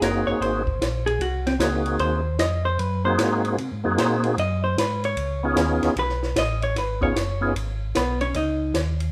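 A moderate large studio reverb lends this short soul jazz organ trio clip a roomy sheen and a soulful, swinging feel. A fat, lightly overdriven percussive tonewheel organ with key click, chorus vibrato and slow rotary speaker carries the melody until 7.5 seconds, while a clean, picked and compressed hollow-body electric guitar takes a featured solo over the shift from Ab9 to Db9 at 5.2 seconds. Underneath, a round, mellow second organ plays the bass line, and a dry compact cocktail drum kit with dark cymbals, a high-tuned snare and a tight kick swings on hi-hat, ride, snare and kick.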